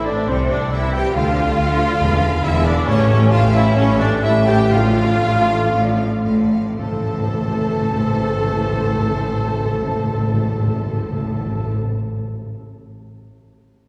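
In a rubato 4/4, this dramatic, urgent excerpt from a fast romantic symphonic movement sets a lush violin section on the melody against second lines from a warm oboe, a second soft-attack violin section and an airy flute ensemble, over bowed violas, focused cellos and distant double basses, with very quiet mellow horns and bright trombones holding chords, a ringing fingerpicked harp in arpeggios, and round soft-mallet timpani entering at 2.0 s as the music slows until 6.8 s, the whole orchestra heard in a wet church reverb.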